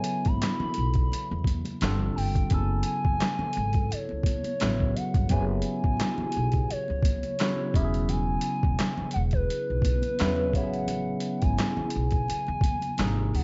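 A late-night, introspective neo-soul groove opens with a gritty, pitched-down boom bap kit of thumpy kick, snare, hi-hat and handclaps, up front beside a barky, lightly overdriven tine electric piano with phaser, while a mellow portamento lead with chorus and vibrato glides over the top. From 0.3 seconds a woody, dark pizzicato upright bass anchors the swung R&B feel, and damped, high-tuned congas sit in the background. Light reverb and vinyl crackle give this short excerpt a dusty, rolled-off sheen as the lush chords drift from Aadd9 through F#m11 to Amaj9.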